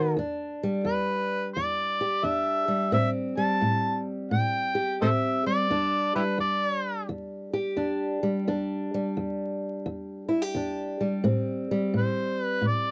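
Mournful and smoky, this swung acoustic country blues excerpt puts a gritty, overdriven, amplified harmonica up front, playing a jazz-style solo line with light vibrato, tongue slaps and scooped notes until 7.0 seconds and returning at 12.0 seconds, over a dark, woody, boxy fingerpicked ladder-braced acoustic guitar on old strings, captured in a dry, close 1970s-style studio sound with light reverb and vinyl crackle.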